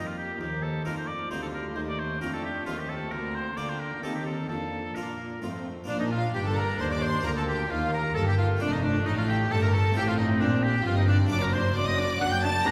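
Moving in a straight three-beat metre, this lively, festive baroque-style concerto movement, taken from a longer piece, has a clear, vintage-toned oboe up front carrying the solo melody with vibrato and a soft attack. A lush string section doubles the melody higher up with a focused, smooth top, while a second violin section plays an expressive inner line in the background. Violas give even, distant accompaniment, and a brilliant, Italian-style harpsichord with octave strings adds plucked accompaniment further back. Cellos anchor the bass with a mellow, soft-edged tone and touches of portamento, and a double bass section joins them at 5.9 s as the second section begins, deepening the low end. The whole ensemble sits in a reverberant concert hall, heard from a distance in the room.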